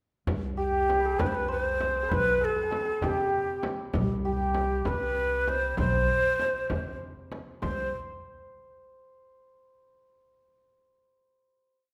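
A recital hall's wet reverberation, with a decay of 1.4 seconds, surrounds this short, complete Persian modal ensemble piece in a hypnotic, soulful 6/8 at 65 beats per minute in dotted quarters, tuned to A4 = 439 Hz. Upright bass, frame drum and tombak begin together at 0.3 seconds, the pizzicato bass woody and thumpy on gut strings, landing on the low drum strokes, while the frame drum and a very quiet tombak play close, dry low-and-high stroke patterns with soft hands. At 0.6 seconds the ney enters up front, a breathy, end-blown reed cane voice with vibrato and tongued, expressive phrasing that carries an ornamented modal melody. Beside it the santur plays the same line with its own ornaments, its hammered strings bright, shimmering and ringing. The ensemble plays through to 7.9 seconds, and the final note lingers in the hall until the close at 9.5 seconds.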